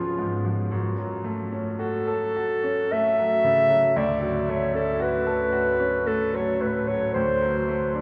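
Bathed in the long wash of a cathedral reverb, this brief, melancholic and elegiac excerpt of a romantic classical duo sways in a rubato triple metre, as a mellow, distant clarinet sings the solo melody up front over the brilliant accompaniment of a bright grand piano, moving from C#7 to F#m and on to Dmaj7 before settling on D at 7.2 seconds.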